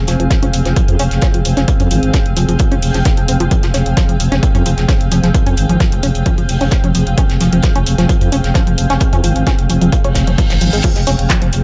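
A punchy analog kick drives a straight 4/4 pulse at 131 BPM, arriving just after a layered electronic techno kit of handclaps, hi-hats and crash cymbal, re-recorded in a large room, with its hats pumping against the kick. Behind them sits a cloth-damped acoustic kit with a fat, gritty snare and hi-hats, saturated and rolled off at the top, while a growling, thick FM bass holds up front over a steady F minor chord in this driving, relentless peak-time techno cut from a longer piece. A tight, nasal sawtooth riff in the middle register carries a moving notch and filter pluck, coloured by chorus, tube saturation and analog delay, and pumps with the sidechain. Above it, a cloudy, evolving granular pad with a slow attack and long release drifts through its own reverb, blurred and bright, breathing with the same pumping. A reverse cymbal rises in the background from 10.1 seconds into an electronic impact at 10.8 seconds, closing a hypnotic, echo-heavy mix under light reverb with a dark top end.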